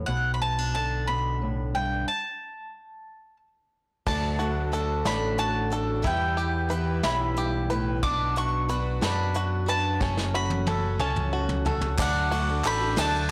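A bright, double-strung mandolin with slapback echo carries the melody up front in this anthemic, nostalgic 6/8 indie folk passage, over a round, amped electric bass and a warm fingerpicked steel-string guitar, pausing for a stop at 2.1 seconds before a shimmering, octave-doubled twelve-string guitar, a twangy banjo playing arpeggios with slapback echo, and a brushed studio drum kit with a softly clipped snare join at 4.1 seconds, then a drum fill leads to a brief closing lift at 12.0 seconds where an airy, bell-like glockenspiel, a very quiet, slightly detuned upright piano, crisp handclaps and a grainy tube shaker add color, all within a blown-out, overdriven recording touched by light studio reverb.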